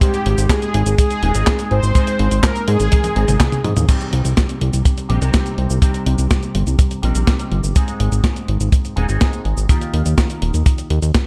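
Dark, warm production with light digital reverb frames this bittersweet, danceable italo disco excerpt: a mellow, brassy synth melody with chorus and tape coloring sings only until 3.6 seconds, while a twangy envelope-filtered electric guitar plays bright, clean stabs, a fat, saturated analog bass sits up front, a tight, dry kick punches forward, and a tape-warm, sampler-style drum machine of handclaps, cabasa, hi-hat, snare, crash and toms plays a fill from 2.9 seconds.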